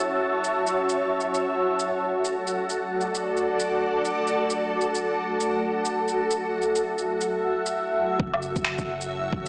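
Rainy and wistful, this short future garage passage, cut from a longer piece, drifts on a swung sixteenth-note feel. A cloudy granular pad carries sustained chords from the opening, its detuned, blurred sine tones evolving through built-in reverb while sidechain pumping makes it breathe. It moves from F#m7 to D/F#, holding up front in a mellow haze. An overdriven cluster of electronic shaker, woodblock and finger snaps enters at 0.4 seconds, sitting close and gritty over the pad. At 8.2 seconds the second section arrives with a layered, deep overdriven kick and a round sine sub bass pumping on F#1 as the harmony returns to F#m7. A lush hall reverb, vinyl crackle and a small-speaker tone wrap the whole mix in a worn, rainy atmosphere.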